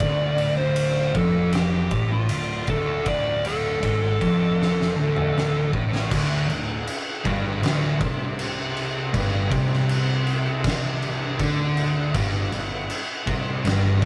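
A rough rehearsal-room recording with moderate booth ambience carries this brooding, ominous stoner and doom metal passage, cut from a longer piece, where an oversized low-tuned acoustic drum kit sits up front with a fat snare, punchy kick and sombre cymbals in a bright, pumping stone-room sound; a dark, distorted fuzz lead guitar carries the melody until 5.7 s, overlapping a drum fill that runs from 4.6 s to 6.1 s; two thick fuzz guitars grind out picked riffs in the background over a growly fingered fuzz bass; and from 6.1 s a very quiet, double-tracked, overdriven semi-hollow guitar adds its own riff as the chords move from Dm to D7sus4 and a rootless Fsus2.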